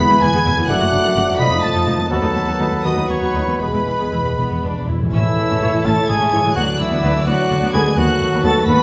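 A roomy recital-hall sound frames this cheerful, spirited classical excerpt, a fast romantic movement in 6/8 and A major at 77-86 BPM with rubato, where lush bowed violins carry the melody over second lines from airy flute, mellow oboe and more violins, with violas, a bassoon that stops at 4.9 s, distant dark horns and trumpets, ringing harp arpeggios, and warm cellos and woody double basses below, while timpani fill in from 3.6 s and very quiet punchy trombones join at 5.6 s.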